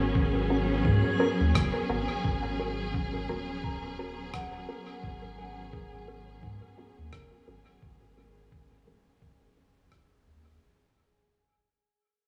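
Ambient dub in a meditative, deep mood, this short fragment of a longer piece rests on a lush, bowed symphonic string section holding sustained G#m11 chords up front, with a round, nasal analog bass carrying tube saturation and a pitched-down, muffled electronic kick giving a thumpy pulse with a gentle swing. Muted, detuned sawtooth dub chord stabs with phaser and dub echo enter at 0.5 seconds, a gritty rim click bathed in dub echo sits in the background from 1.6 seconds, and a pure FM synth bell plays arpeggios through chorus, phaser and tape echo while a reversed, granular swelling texture drifts dreamily behind. Filter sweeps run across both the stabs and the bell as a small room ambience frames the sound and the whole passage fades out.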